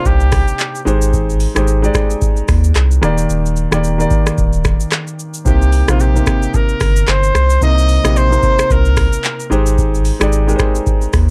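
A dark, lightly reverberant production frames this hypnotic, smooth afrobeats excerpt in C minor at 111 BPM with a swung 16th-note feel, where a booming analog drum machine of deep kick, metallic hi-hat, finger snaps, handclaps, rim click and shaker sits up front beside a thick, saturated sub bass, a concert grand piano with short sustain moves through Cm7, Abmaj7 and Ebmaj7 chords, and a distant, roomy solo trumpet with light vibrato and scooped notes carries the melody through plate reverb, sounding briefly at the opening and again from 5.5 to 9.5 seconds.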